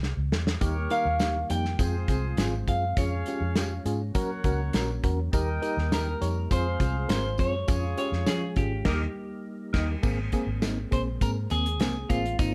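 Uptempo, danceable 1960s-style soul in Ab major at 102 BPM, this excerpt opens with a drum fill on a tight, up-front country kit as a clean, hollow-bodied semi-hollow electric guitar carries the melody over a dark, round, foam-muted fingered bass, while a tight horn section with light vibrato adds a second line until 9.9 s, a reedy electric piano with fast tremolo comps, a percussive tonewheel organ through a fast rotary speaker holds background chords, a jingly tambourine sparkles, and after a band accent the guitar takes a short solo from 10.0 s over an Abadd9 chord in light reverb.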